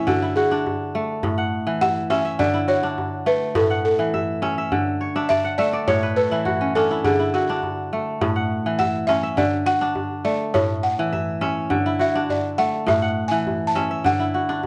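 A straight, even 4/4 pulse carries this hypnotic, joyful piece of West African string and xylophone music, cut from a longer performance. The balafon takes the lead and solos throughout, its woody, dry tone struck with soft rubber mallets and edged with a buzzing resonance. Beneath it the kora, bright, ringing and up front, spins out crisp fingerpicked arpeggios that reach deep into the low register and break into a brief fill from 5.0 to 7.0 seconds. The djembe joins at 0.1 seconds, sitting lower in the mix with a tight, cracking sound that has a vintage, band-limited character. The harmony rocks steadily between D and A chords, and a moderate recital-hall reverb gives the ensemble a sense of open space.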